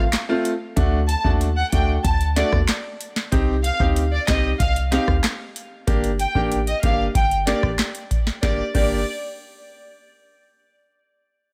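A floating, smooth violin section carries the melody from 1.1 s, its soft-attack bowed line treated with tape echo over a hypnotic, tough dancehall groove cut from a longer piece. A booming analog drum machine drives it with a deep kick, crisp snare, handclaps, metallic hats, rim clicks and a crash, while a clean, sine-like 808-style bass adds boomy, decaying low end. A bright, brilliant baby grand piano with long sustain moves through F, D, Cm and Gm in a dry, up-front mix that shifts into a new section at 8.4 s.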